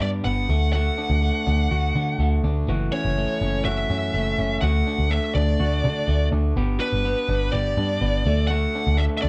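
A fuzz lead guitar, a twangy electric guitar through a small old amp and a muted electric bass start together in this short, cut-off stretch of jangly indie pop, which feels restless and wistful. The lead sits up front, its picked melody thick with distortion and a gentle fuzzy heat. Beneath it, the amp-driven guitar plays bright, slightly broken-up arpeggios with a compressed, picked edge. The foam-muted bass sounds dark, round and amped, and it is the most forward part in the balance. The harmony moves from D through F#m7, back to D, then to G and home to D at 8.3 seconds. The band sounds as if it is playing live together in a small room, with a moderate reverb giving the sound a close, intimate space.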